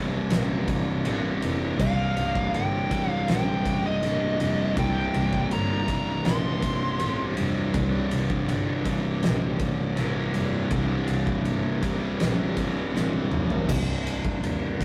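A wah-soaked fuzz lead guitar, compressed and up front, cries out a high melody between Eb5 and C6 from 1.8 to 7.3 seconds in this brooding, sludgy stoner and doom metal excerpt at 81 BPM in straight 4/4. Beneath it, two dark, picked fuzz guitars grind out a low riff between C2 and C3 over a C5 power chord, one pushed to the front and the other sitting further back, the front one dropping out at 13.7 seconds. A rich, focused double bass, bowed by a single player with vibrato and roughened by overdrive, holds the low end from F1 to Eb2. An oversized, low-tuned acoustic kit pounds away in a big, pumping room, its punchy kick, fat snare and dark cymbals gritty and saturated, with a drum fill from 12.9 to 13.7 seconds leading into a brief shift onto a C minor chord. The whole fragment has the rough, close feel of a rehearsal-room take under moderate reverb.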